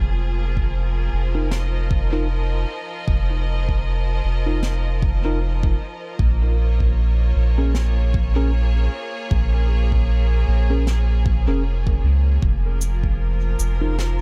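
A round, up-front dub sub bass anchors this deep, spacious ambient dub piece at 77 BPM in Bb minor, swinging loosely on the 16ths as the harmony moves from F7sus4 to Bbm7 and settles on Fsus4 at 12.4 s. A layered electronic kick, re-recorded in a small room, drives the groove, while brushed snare with cabasa, entering at 1.5 s, and clean tine electric piano stabs heard through a combo amp both trail dub echo. Alongside them, a clear, bowed symphonic string section holds sustained chords with light vibrato and vintage 12-bit sampler grit, set in a small room ambience.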